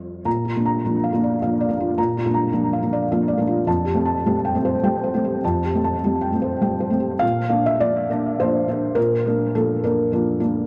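In a rubato 3/4 at around 103 BPM, this short neoclassical minimalist piano excerpt feels tender and hopeful. A felt-muted upright piano plays solo, ranging from F2 to Bb5. Its tone is soft and dark, shaped by thick felt and short sustain, and audible action noise keeps it intimate and up front. Dub echo trails its notes, while a moderate plate reverb with a 2.4-second tail gives the echo-heavy mix a hazy depth. The harmony rests on Bb, moves to Fadd9 at 3.7 seconds, and returns to Bb at 7.2 seconds, where a new section begins in this passage cut from a longer piece.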